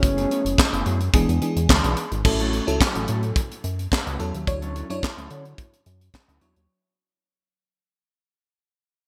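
Bright 1980s-style digital production frames this feel-good, danceable early-eighties boogie funk fragment, where an up-front, tight funk drum kit with a high-tuned snare, handclaps and gated reverb drives a retro, nasal chorused synth bass; a lush, dreamy FM electric piano with a soft pad layer, treated with chorus and phaser, moves through F#m11 and E7 to A6 and Dmaj9; a dark, clean electric guitar riff sits chorus-soaked in the background; and a smooth, expressive synth lead with vibrato sings only until 0.9 s before the track fades out from 2.2 s.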